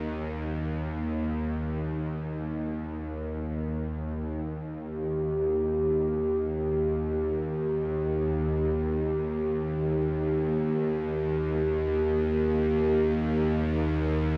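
A bright, string-like drone sits up front from the opening, its tense sawtooth edge carrying a noise layer, vibrato and its own reverb as it sustains low throughout this haunting stretch of free-time world meditation music. At 4.7 s a glass harmonica enters as texture, pure and ethereal with a slow attack, beating and a boxy small-room tone. The whole mix is soaked in a huge ambient reverb that lends it a dreamy, meditative haze.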